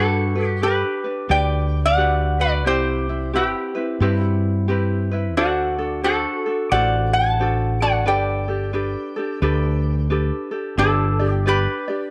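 Hawaiian instrumental in G major, sunny and relaxed, moving at an easy 89 BPM in 4/4 with a lilting swing on the eighth notes. A metal-body resonator slide guitar carries the melody up front, its fingerpicked slide tone metallic and nasal as it ranges from D4 to A5. Beneath it, a ukulele supplies light, fingerpicked accompaniment, while a fretless electric bass gives a dark, round foundation from G1 to G2 before dropping out at 11.7 seconds. The harmony drifts gently through Gmaj7, Cmaj7, D7 and Gadd9, then settles on G at 10.8 seconds as the opening phrase begins again. A moderate spring reverb and small room ambience add a soft halo to this brief cut from a longer piece.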